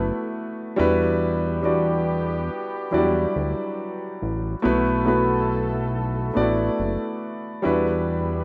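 R&B and neo-soul at a slow 70 BPM in E minor, this late-night, soulful fragment of a longer piece sways on a light sixteenth-note swing as it moves from B7sus4 to Em9 and back. An intimate grand piano sits up front, its action noise audible, alongside a fat, detuned analog bass with a quick filter pluck. Punchy, octave-doubled horn stabs with vibrato and tape echo sit distant in the background, and the rough home-demo mix is bathed in a lush hall reverb.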